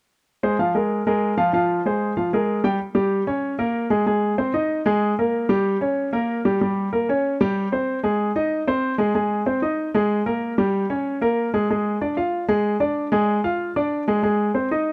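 Lively and danceable, this short jazz clip is cut from a longer piece and features a solo baby grand piano in a straight 4/4 feel. The piano enters at 0.4 seconds and carries everything alone until 14.9 seconds, ranging from F3 to G5. Its tone is warm and natural, with a short sustain that keeps each chord crisp, and it sits up front in the mix. The harmony opens by moving between Fmadd11, Bb5 and Fm, then shifts at 2.8 seconds into a longer passage built on Gdim and Abadd9, passing through Ddim/Ab before settling on Ab. The sound is dry and close, in the manner of a 1970s studio recording with very little reverb.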